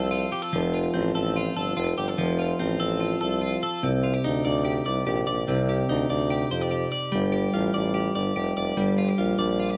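A straight 4/4 pulse at 146 BPM drives this short, breezy slice of jangly indie pop in F major, tuned slightly low to A4 = 438 Hz, with a nostalgic glow throughout. A clean, compressed twelve-string electric guitar sits up front, picking arpeggios between C3 and D5 for the full 9.8 seconds. Beneath it, a punchy, present tuba carries the bass line from F1 to F2 with pop-style vibrato, also placed up front and stopping at 9.7 seconds. The harmony moves from F to Cmadd9 at 3.8 seconds and then to Gm7 at 7.1 seconds. The two players sound as though they are performing live together in one stone room, with a moderate reverb that gives the clip, cut from a longer piece, an airy sense of space.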